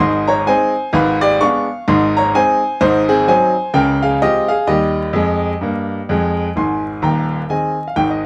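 Playful and exuberant, this short stride-piano jazz excerpt swings at 128 BPM in Ab major, with a bright, brilliant grand piano playing solo and up front across a span from Eb1 to Db6 through chords moving from Ab and Abdim7 to Ab7, Dbmaj7 and Eb before landing back on Ab at 6.6 seconds, all set in a moderate club reverb and colored by worn cassette tape, vinyl crackle and warbly pitch drift.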